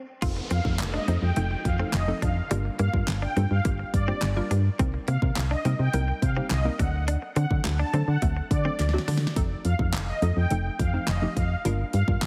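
Dance-pop with an energetic, driving drive, this clip from a longer piece opens on a bright, twangy clean electric guitar riff that plays until 9.2 seconds. A punchy, round FM bass and an up-front pop drum kit with a fat snare, crash, hi-hat and handclaps carry the drop, with a drum fill at 8.8 seconds. A hollow, bouncy square-wave pluck with chorus, an evolving sawtooth supersaw swell melody with digital delay, a background downlifter and a very quiet, crisp group handclap fill out the heavily compressed, radio-style mix, where the bass, pluck and swell pump with sidechain.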